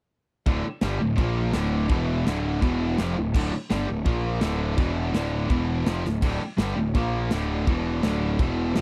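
Relentless and heavy, this heavy metal excerpt drives along at 166 BPM in a straight 4/4, with the whole band playing together from 0.5 to 8.8 seconds. Three guitars sit in the background and share one riff: a double-tracked, overdriven cranked stack guitar, a compressed distorted electric guitar and a high-gain distorted guitar, all bright and picked as they cycle through D5, Bb5 and E5 power chords with a recurring D minor chord. Up front, a fuzz picked electric bass holds down the low end with a growly, overdriven tone. A polished modern studio drum kit is just as prominent, with a punchy kick, a medium-tuned snare, crash and china cymbals, and a drum fill at 6.1 seconds. The mix has a dry, close 1970s-style studio sound, while the drums carry an airy sense of the room.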